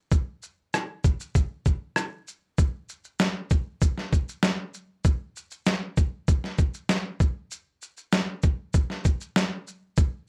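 A dusty, sampler-style soul drum kit opens at 0.1 seconds and carries this short pop excerpt alone, its thumpy kick, medium-tuned snare, rim click and shaker sitting up front with a gritty, overdriven, compressed character. At 97 BPM in a straight 4/4, the mood is sunny and heartfelt, and the groove moves from its opening section into a second one at 2.6 seconds. The close, detailed sound carries little reverb, though the kit itself bears the trace of being re-recorded in a small room.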